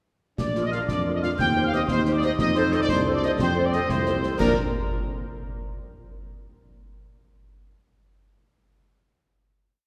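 A proud, festive military-style march for wind band in 6/8 and Bb major, moving at 120 BPM in dotted quarters as a complete miniature piece that lands on a final Bb chord at 4.4 seconds. A bright, present trumpet section carries the tune with tight classical phrasing, while an airy piccolo with a crisp attack doubles it at the octave in the background, and a clear euphonium with light vibrato sings a distant counter-melody. Beneath them, an up-front tuba with a smooth top anchors the bass on the beats, a mellow French horn section and a dark, roomy woodwind section fill in after-beat and sustained chords, and close marching snare over bass drum with dark clash cymbals drives it all, the whole band bathed in a wet church reverb.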